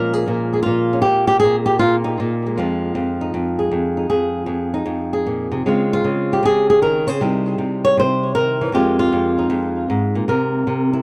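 A dry, close 1970s-style studio sound frames this moody, late-night solo jazz passage in F minor, cut from a longer piece and lasting 11.0 seconds. A fingerpicked acoustic flamenco guitar sits up front with tape echo, playing throughout at 156 BPM in 4/4 with a swung, rubato feel. It moves through Bbm7, Fm7, Dbmaj7 and a tense C7#9 before returning to Fm7 and closing on C7(no3).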